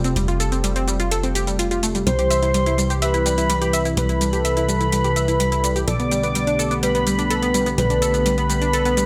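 Progressive house at 126 BPM in a straight 4/4, this short cut from a longer track carries an expansive, emotional mood over chords moving from Fadd9 to C and then Gadd9/B. From the opening, a smooth, warbling vintage pad holds sustained chords with chorus, while a round, detuned analog pluck traces arpeggios through chorus and tape echo, and a punchy, funky bass with a wave-folded edge anchors the low end. Layered electronic hi-hats and shaker sit slightly lower in the mix, their metallic tone roughened by overdrive and set in studio ambience. At 2.1 s a velvety synth lead enters as the loudest part, carrying the melody with vibrato, chorus and tape echo. Alongside it, an airy, mellow supersaw adds a second line high above, shaped by a moving notch and its own tape echo, and the whole piece sits in a moderate digital room reverb.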